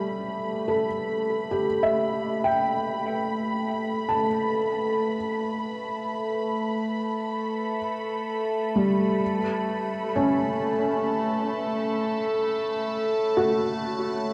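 A felt-muted upright piano, intimate and thick-felted with tape echo, plays arpeggios up front from the start over a chorused, wave-folded analog drone held on A3 and a veiled, con sordino violin section adding a bowed, vibrato texture on B5. All of this is heard in free time in G lydian, moving from Gadd9 to F#m/G at 9.2 seconds. A bright, morphing wavetable pad with phaser fades in from 0.5 seconds as the drone and violins fade out, and the whole piece sits in a wet cathedral reverb with a dark production, giving this ambient excerpt a luminous, weightless mood.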